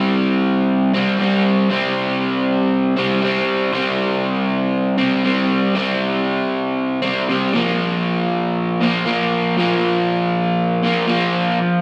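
Rock at 118 BPM in a straight 4/4, rowdy and raw, this short cut from a longer piece features a lone crunchy overdriven electric guitar, bright, picked, double-tracked and up front with slapback echo, ranging from Bb2 to C4 over a C5 chord that shifts to Bb5 at 7.5 seconds, tuned to A4 = 441 Hz and heard as a live gig through the venue's PA in a moderate club reverb.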